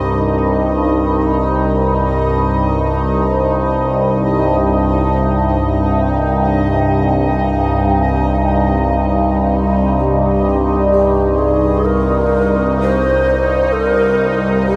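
In free time, this dark ambient drone in C minor sits on a single Cm chord, ominous and cavernous, bathed in a huge wet reverb. A detuned, resonant sawtooth-and-sine drone with moving overtones holds up front in the low register from the start, while a bubbling texture with random filter steps, treated with chorus, sustains above it. At 10.0 s a distant, hollow shakuhachi enters with airy, mellow tone, vibrato and a tongued chiff, trailing a diffuse ambient delay until the excerpt breaks off at 14.8 s.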